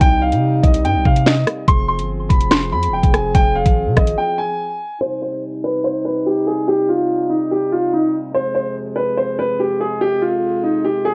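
Cold and tense, this half-time drill beat at 144 BPM sits in C harmonic minor, moving between Cm and Fm, and is cut from a longer hip hop track. A dark, boxy concert grand piano carries the melody up front with long sustain, over warm, classical-style chords from a brass ensemble, both softened by a low-pass filter. Beneath them, a deep, sine-like 808-style bass with a fast attack and mellow decay pairs with an electronic drum kit of knocking kick, sharp snare, metallic hi-hats, rim clicks and finger snaps, the kit carrying a gritty 12-bit sampler edge. The bass and drums drop out at 4.2 seconds for a short break, leaving piano and brass to continue under a filter sweep from 5.0 seconds until the close at 11.1 seconds. Light reverb and a worn cassette-tape wash with warbly pitch drift give the whole track an aged, unsettled haze.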